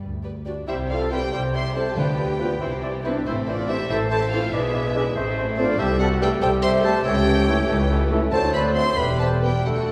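Graceful and spirited, this brief passage from a quick classical-period movement in a lilting 6/8 unfolds with a gently rubato feel. A clear, pure double bass section sits up front from the very start, and the violins soon carry the melody with light vibrato and a soft, sul tasto touch, while a second violin line and a vibrato-rich viola accompaniment murmur in the background. An airy, expressive silver flute enters at 0.5 seconds, followed shortly by a smooth-topped clarinet, a close-miked cor anglais, a distant, roomy bassoon and a dark cello section, these four all sitting in the background. A tight, very quiet French horn section holds sustained chords from 1.1 seconds, and round, soft-mallet timpani on calf heads sound only briefly, at 2.0 and again at 8.3 seconds. The harmony drifts from bright major chords toward minor colours and ends on E minor, and the whole ensemble is heard from further back in a reverberant scoring stage.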